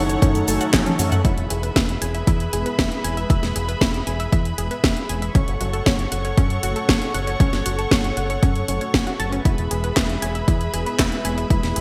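Italo disco at 117 BPM in E major, sunny and playful, this excerpt opens with a soft, octave-layered synth lead that sounds only until 1.1 seconds over the full band, then moves from F#m to E beneath smooth studio strings, round analog pluck arpeggios, mellow detuned synth-brass stabs in the background and a fingered electric bass through an envelope filter, while a tape-warm house kit with a cracking snare, handclaps, cabasa and toms, plus a punchy electronic kick, drives things from the start, with a drum fill leading into the second section, all set in a bright 1980s-style digital production with lush hall reverb and a filter sweep on an analog polysynth from 1.2 seconds.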